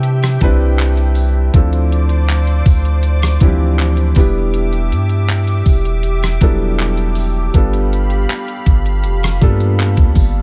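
A dry, close-sounding excerpt of tender, dreamy contemporary R&B in straight 4/4, cut from a longer piece. A soft, muted felt upright piano plays intimate accompaniment over Cmaj7, Dm7, Em7 and G7, while a detuned sawtooth analog pad holds smooth, warbling chords with chorus and sidechain pumping, and a deep, sine-toned 808-style bass sits up front. A crisp 8-bit drum machine with a thumpy kick, handclaps, hi-hat and rim click has a tape-warm, small-room character, and a very quiet, inharmonic FM synth chime rings only until 1.6 s.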